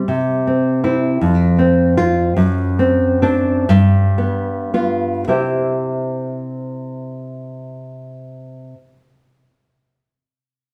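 In 6/8 with free rubato, the pulse drifts between 35 and 54 BPM in dotted quarters and slows down through the first 5.3 seconds. This romantic piece for solo classical guitar is in C major, tuned to A4 = 438 Hz, with a tender, sunny mood. The nylon-string guitar sits up front, thumb-plucked on fresh strings for a warm, acoustic tone across a range from F2 to E5. The opening phrase moves from C through F5, D7/F# and G7 before settling back on C at 5.3 seconds, where a second section begins; the guitar sounds until 8.8 seconds. A wet recital hall reverb with a 1.7-second decay surrounds the instrument in this short cut from a longer piece.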